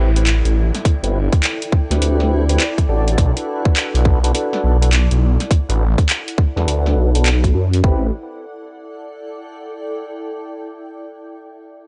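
A thick, swirling detuned saw bass with a phaser sits up front in this gritty, swaggering glitch hop excerpt at 103 BPM in A dorian, swung on the sixteenths, moving from Am9 to Bm7 under mellow tonewheel organ stabs run through chorus vibrato, slow rotary speaker, sidechain pumping, a low-pass filter sweep and analog delay. A drum kit of woody snare, metallic hats and handclaps re-recorded in a small room starts at 0.2 seconds, and a tight, layered electronic kick punches in at 0.9 seconds, while a very quiet downlifter opens the clip and a cloudy, evolving granular pad with built-in reverb and pumping fades out. The pad holds on alone after 8.1 seconds, closing a dry, gritty hardware-recorded sound with dulled top end.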